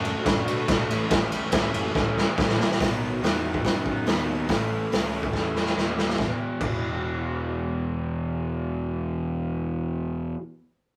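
Garage rock in a swaggering, rowdy mood, this short cut from a longer piece charges along at 142 BPM in a straight 4/4, with a rough rehearsal-room sound and light reverb. An overdriven, double-tracked electric guitar sits up front with a bright, picked riff, moving through D, A, B and A before landing on an E5 power chord at 6.2 seconds. Beneath it, a fuzz-soaked picked electric bass growls with its own overdrive, carrying the low end until 10.3 seconds. The acoustic drum kit sounds gritty and saturated, with a punchy kick, a medium-tuned snare, hi-hat, ride and crash, and a rolled-off top that keeps it mid-forward. The drums throw in fills at 2.0 and 5.3 seconds, then drop out at 6.7 seconds, so the guitar and bass carry the final stretch on their own.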